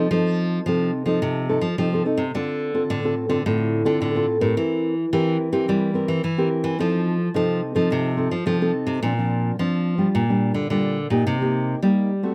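Close, detailed and nearly dry, this joyful, sunny samba and choro fragment at 108 BPM in 4/4 pairs a full-bodied, fingerpicked nylon-string guitar with fresh strings and audible finger squeak against a thumb-plucked nylon-string bass line, both classical in tone and up front, moving through F7, Dm7 and C7/E before shifting at 9.0 seconds to Bbadd9, Gm7/Bb and Cm7.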